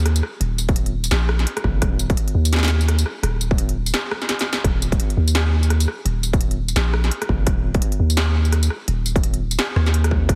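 A dry, heavily compressed radio-style sound frames this tense, dark fragment of half-time drum and bass with a swung feel. A deep, mellow sine 808-style bass holds long decaying notes from the start, joined by an overdriven industrial drum kit of crisp hats, rim clicks, tambourine and a clanging snare, while a distorted electronic kick enters at 0.7 seconds. The up-front drums sound re-recorded in a small room, and a brief fill arrives at 4.3 seconds within the single section.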